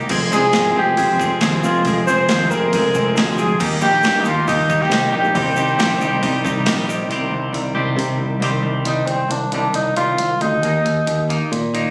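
A bright, overdriven cranked stack guitar riff, a very quiet, fingered mellow electric guitar and a grainy egg shaker in the background open this bittersweet, restless indie rock excerpt in C minor at 137 BPM. They are soon joined by a direct picked electric bass, a clean 12-bit digital drum machine with a thumpy kick and tape-tinged sampler character, and an up-front, dark cor anglais melody with light vibrato and slapback echo. The shaker drops out at 7.0 seconds and the mellow guitar at 8.9 seconds, after the break, in a lightly reverberant, phone-in-the-room sound.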